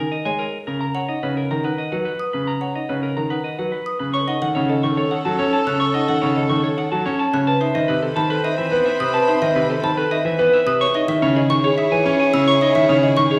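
In a straight-feeling triple metre, this urgent, hypnotic stretch of minimalist classical pattern music sets a clean, picked electric guitar melody up front over buzzing hard-mallet marimba arpeggios in the background, dry plastic-mallet xylophone arpeggios and bright, brilliant grand piano accompaniment with audible action noise, before a clear, soft-attack clarinet second line and a rich, vibrato-laden bowed violin section holding sustained chords join at 4.1 s, the whole ensemble heard in a wet recital hall reverb.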